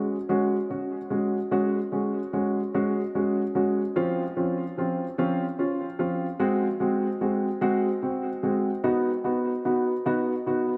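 A solo baby grand piano sits up front in this brief pop fragment, its intimate, natural tone carrying the faint clatter of the instrument's action beneath each note. The mood is melancholic and aching, moving in 6/8 with a straight feel, the playing confined to the middle register between F3 and Gb4. Short sustain keeps each note from lingering on its own, but a subtle chorus and a diffuse ambient delay blur its edges, and a wet plate reverb soaks the whole mix in a dreamy haze. The harmony drifts from Gbsus2 through Dbmaj7/F to Ab7 at 6.4 seconds, before a new section opens on B at 8.8 seconds. The piano plays alone throughout, stopping at 10.7 seconds as the fragment breaks off from the longer piece.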